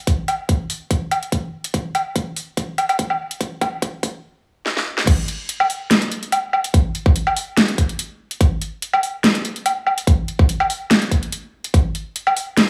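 Dubstep in a half-time 4/4 feel with a light swing, aggressive and chaotic in mood, cut from a longer piece. A dubstep drum kit carries the whole passage, its huge snare, metallic hats, crash cymbal and woodblock sitting up front with a tape-warm, layered, produced character and high-pass filtering across the hats, snare, cymbals, toms and percussion. Alongside it, a punchy electronic kick drum, overdriven and re-recorded in a small room, stays up front until 11.8 seconds. The opening build-up runs under a filter sweep, with drum fills pushing toward the drop at 5.1 seconds. From there the drop carries the drums through to the end, wrapped in a light reverb and a small room ambience.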